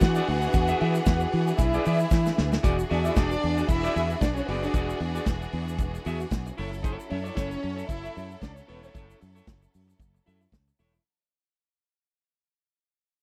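Disco at 114 BPM with a light sixteenth-note swing, joyful and danceable, this cut from a longer piece opens on E7 before a drum fill at 2.1 seconds leads into a section on E9 that moves to F#m7 at 6.6 seconds as the music fades out. Up front, a dry, tight soul drum kit with a rolled-off top and a round, foam-muted fingered bass anchor the groove, while a dark, slightly broken-up picked electric guitar adds accompaniment and a grainy tube shaker sits in the background. Two bowed string sections fill the texture: an intimate, sul tasto ensemble carries a second line until 8.9 seconds, over lush, focused sustained chords from the other, all captured in a close, 1970s-style studio sound with little reverb.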